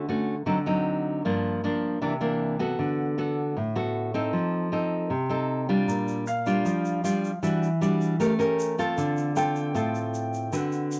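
Relaxed and sunny, this short passage cut from a longer bossa nova moves at a brisk 155 BPM in a straight 4/4. A fingerpicked nylon-string guitar sits up front throughout, its warm, classical tone carrying the accompaniment through chords such as D7b9, Gm7 and C9 in the opening section. At 5.9 seconds the music settles into B-flat major on a Bb6 chord, and a grainy, bright tube shaker joins, close and dry, low in the mix. Shortly after, at 6.3 seconds, a concert grand piano adds a few clear, open high notes behind the guitar as the harmony passes through Em9, A7b9 and Dm7. A light reverb gives the recording a gentle sense of space.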